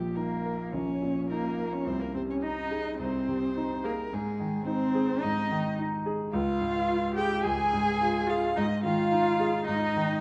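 In a quick 4/4 that bends freely with rubato, this stormy, dramatic fragment of a classical-period movement for piano trio unfolds. The violin carries the melody con sordino, its bowed line veiled and muted, shaded with vibrato. Beneath it the cello plays a second line, also con sordino with vibrato, sitting close and up front in the mix. The concert grand supplies the accompaniment with a clear, open tone, deep bass and short sustain, and is also placed forward. All three play through the full 10.2 seconds over a progression that moves from Eb7 over Bb through Ab/C and Ab to Db before returning to Ab5. A reverberant recital hall surrounds the trio, and the production leans dark and warm.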